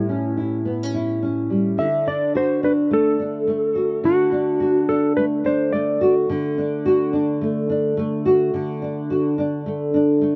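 Reflective and tender, this short pop excerpt moves at 107 BPM in 4/4 with a gentle swung sixteenth-note feel. A clean lap steel guitar carries the melody from the start, its dark electric slide tone sitting up front before it stops at 6.1 seconds. Beneath it, a thumb-plucked nylon-string guitar supplies the accompaniment throughout, its deep classical voice double-tracked and touched with slapback echo. The harmony shifts from A7 to D at 1.8 seconds, opening into the second section, where the nylon-string guitar plays alone after the melody drops away. The sound is dry and intimate, with little reverb and an open-air feel that keeps the two guitars close to the listener.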